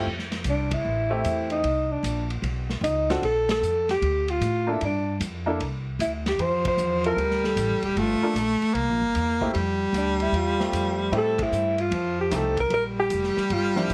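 Small-group swing and bop jazz in F major, relaxed and swinging at 152 BPM in 4/4, cut from a longer piece, with a breathy, dark alto saxophone carrying the melody from 0.5 seconds, touched by plate reverb, while a mellow, whispered baritone saxophone with vibrato joins on a second line at 6.4 seconds. Underneath, a brilliant upright piano comps, a woody, thumpy pizzicato upright bass sits up front, and a muffled, lo-fi vintage drum kit with dark cymbals and a tight kick works hi-hat, ride, snare and kick, the band striking accents at 0.6, 3.4, 6.6 and 11.3 seconds. The whole mix carries a heavily compressed radio sound in a light room, moving through Fmaj7, Gm9 and C7 changes before landing on Bb69.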